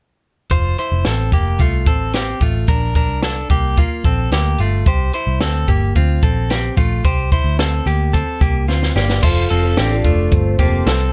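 A compact cocktail drum kit sits up front in this short excerpt of jangly indie pop, its punchy kick, high-tuned snare and dark cymbals sounding dry and natural, and a drum fill at 8.7 seconds carries the music into a new section. Beneath it, a vintage muted electric bass plays round, foam-muted picked notes with an amped edge, while a clean, direct-recorded electric guitar, warm, compressed and scooped, picks arpeggios that suit the youthful, breezy mood. At 9.0 seconds a soft octave-layered synth lead enters with the melody, a full-bodied blend of triangle and sine with a sub octave, detuned and sustained, colored by chorus, phaser, vibrato, slapback echo and plate reverb. A picked twelve-string acoustic guitar joins at 9.2 seconds, woody and boxy with old strings and a shimmering, octave-doubled ring. Overall the recording carries very little reverb, keeping the band close and intimate.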